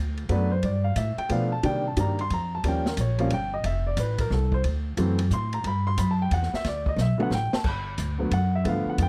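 A dry, close 1970s-style studio sound with small room reverb frames this playful small-group swing and bop jazz in a swung 3/4 at 180 BPM in G major, where a woody, up-front pizzicato upright bass opens at 0.0 s, an acoustic drum kit with dark cymbals and a boomy kick enters at 0.2 s and plays a fill at 7.0 s, and an intimate, up-front grand piano, its action noise audible, accompanies through chords moving from Gmaj7 to Cm9, Eb9 and D7.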